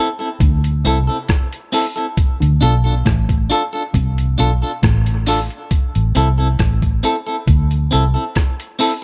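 A round, foam-muted electric bass sits up front in this deep, spacious dub reggae excerpt at 68 BPM in A minor, where a clean, picked electric guitar with tremolo and dub echo opens the accompaniment over Am, Dm and Am chords, a gritty, compressed sampler-style drum kit with thumpy kick, hi-hat and rim click joins at 0.4 s, and a very quiet, mellow fingered electric guitar adds a low riff until 5.1 s, all in a dry setting with little reverb.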